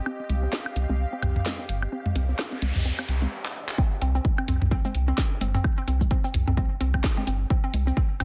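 An airy, breathy pad and a swarming, granular drone open this clinical, hypnotic minimal techno excerpt, pumping against the sidechain as a filter sweep shapes the synth arpeggio. Soon a hollow, detuned square pluck riff with chorus and digital delay joins dry, tape-warm electronic woodblock, congas and toms, a rubbery, nasal square bass up front, and a house kit of handclaps, hi-hat, shaker and a cracking, soft-clipped snare, while an electronic noise sweep enters. After a stop at 3.3 seconds and a drum fill, the drop lands at 3.8 seconds with a punchy electronic kick, all within a dense, heavily limited master.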